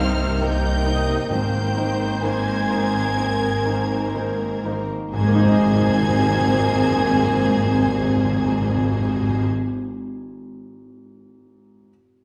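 Heard from further back in a stone room with a 1.4 s reverb, this short cut from a longer orchestral film cue feels emotional, uplifting and hopeful. Set in Ab major and 4/4, it moves freely between 59 and 72 BPM with a rubato feel, slowing over its opening 5.1 seconds as the harmony passes from Cm7 to Abadd9. A lush, bowed violin section carries the high melody with vibrato, while an airy, hollow flute and a lower violin line supply second lines, and a bright viola section fills in the accompaniment. A polished grand piano sits in the background and sounds until 11.9 seconds. Dark sustained French horn chords accompany it, along with very quiet, ringing fingerpicked harp arpeggios and a bass built from a clear double bass section and a rich cello section. Timpani struck with hard mallets enter at 1.3 seconds, articulate and crisp.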